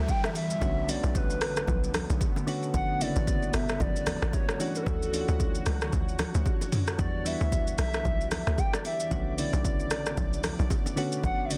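A dense, heavily limited modern mix with light reverb carries this hypnotic, soulful amapiano excerpt in E dorian at 113 BPM, swung on the sixteenths. The overdriven deep house kit sits up front with a deep kick, hi-hat, rim click, shaker and toms roughened by 12-bit sampler grit, while a punchy, tight log drum bass anchors the low end. Bright, close bongos and congas sit in the background, and a very quiet downlifter ends by 2.7 s. Round, mellow electric-piano-like keys with chorus and a blurred granular pad with sidechain pumping carry the Em7, Bm7, Gmaj9#11 and Dmaj7 changes. Above them, a hollow, woody clarinet-like lead sings the melody with vibrato, chorus and tape echo.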